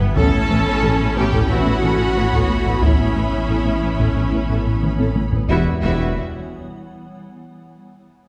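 Brooding and futuristic, this short cut from a hybrid orchestral and electronic film score layers lush bowed violin sections carrying a melody and a second line over a clear viola section, a rich cello section, a very quiet double bass section with portamento, and mellow, very quiet French horns holding chords. Underneath, a deep sine sub bass, a dark, punchy tuba and a round, ring-modulated analog bass riff blend with a cloudy, detuned granular pad that floats in the background. Hard-stick taiko drums sit close and dry against the hall's wet scoring-stage reverb, playing a fill at 4.8 seconds before the harmony shifts from Aadd9 to Emadd9 at 5.5 seconds.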